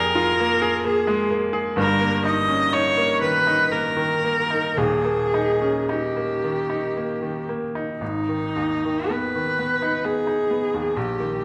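In a rubato three-four metre, this elegiac, solemn romantic classical duo sets a rich, smooth viola melody sung with vibrato by a single bowed player against the bright, polished accompaniment of a baby grand piano with short sustain, both up front in the wet reverb of a recital hall, the harmony moving to G#m as a new section opens at 8.0 s in this fragment of a longer piece tuned to A4 = 443 Hz.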